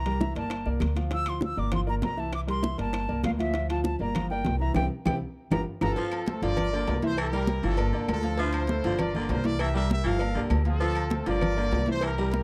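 A fiery, passionate salsa groove at 198 BPM opens with an up-front, woody upright bass, clear vintage grand piano and a bed of thick-skinned congas, ringing timbales with agogo bells, round bongos with cowbell and dry claves under an airy, vibrato-laced concert flute melody, until a band accent and drum fill hand the lead at 5.8 seconds to a tight, bright trumpet section shadowed by a distant, raspy baritone saxophone line in a dry, close 1970s-style studio sound.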